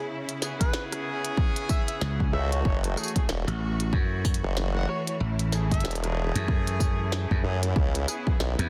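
A dense, heavily limited glitch hop excerpt dusted with vinyl crackle, playful and swaggering in a swung 4/4, where a gritty overdriven harmonica with tongue slaps and scooped jazz notes carries the melody through a digital delay until 5.9 s, over lush, biting strings pumping in the background, distant roomy horn stabs with sampler grit, a glitchy kit of clicky hats and a tiny snare, and an overdriven, up-front punchy kick, with a growly slap bass entering at 2.0 s and a chorused sawtooth formant-sweep wobble bass at 2.3 s.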